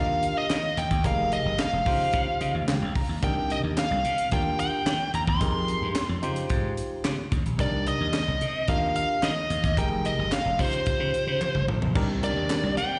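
A straight 4/4 early-eighties boogie funk groove, danceable and funky, rides on a tight acoustic drum kit with a high-tuned snare and a fill at 11.4 seconds, a bright, growly slap bass up front, and very quiet, hollow group handclaps; a barky, lightly overdriven tine electric piano accompanies through slapback echo, adding a fill at 2.1 seconds, beneath a dark, overdriven picked lead guitar melody carrying slapback and tape echo, and a very quiet studio string section with vibrato and portamento enters with sustained chords at 12.0 seconds, the whole cut heard as a live gig through a venue PA with recital hall reverb and a dull, rolled-off top.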